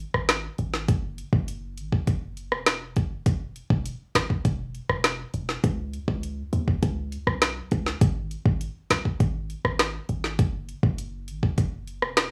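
Dry in a studio room, this hypnotic, bouncy dancehall cut at 101 BPM in 4/4 sets an up-front electronic afro-pop drum kit, with a deep kick, woody snare, rim clicks and dark hi-hats, over a boomy, sine-like 808-style bass whose noise layer, fast attack and mellow decay roll through the low register for the full 12.3 seconds.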